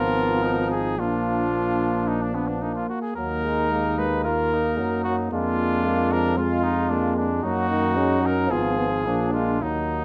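A bright trumpet with light vibrato leads this grave, solemn classical brass quintet passage at 111 BPM in 4/4, tuned to A4 = 438 Hz, with a clear second trumpet set back in the background, a mellow French horn and a brilliant, vintage-toned trombone filling the accompaniment, and an up-front bass trombone with a smooth top anchoring the low end, all five sounding together for the full 10.0 s through moody harmonies such as Ebm and Bb7 in a moderate large-studio reverb, cut from a longer piece.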